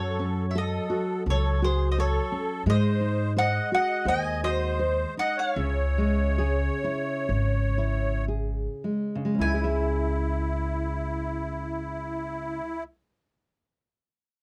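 Mournful and longing, this fado-style ballad in C# harmonic minor unfolds in a rubato 4/4, drifting between 54 and 87 BPM and slowing from 2.7 to 9.4 seconds. A picked mandolin carries the melody with a woody, double-string voice, while a musette accordion, reedy and shimmering in its musette tuning, sits close and dry beneath it as a second line. A dark, full-bodied nylon-string guitar fingerpicks the accompaniment up front, and a pizzicato upright bass on steel strings anchors the bottom. The harmony moves from F#m to G#7 and settles on C#m at 5.6 seconds, with a new section opening at 9.4 seconds. The sound is that of a dry, close 1970s-style studio recording with light reverb, and this passage is cut from a longer piece.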